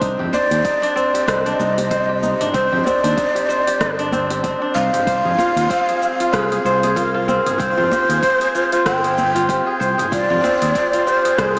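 Earthy, warm organic downtempo at 95 BPM with a 16th-note swing: a crisp, ringing fingerpicked kora arpeggiates up front from C4 to C5 through Cmadd9 and Fmadd9, a breathy, mellow ney with vibrato and a slightly unsteady tone carries the melody from 0.3 seconds, both roughened by 12-bit sampler grit and bathed in ambient delay and shimmer reverb, while a bright, punchy fretless electric bass pumps under sidechain, an overdriven deep house kit with metallic hats, cabasa, rim clicks and toms sits over a deep background kick, and a very quiet, close and dry djembe adds texture, all in a dreamy, reverb-soaked mix with a small-speaker sound, in this brief cut from a longer piece.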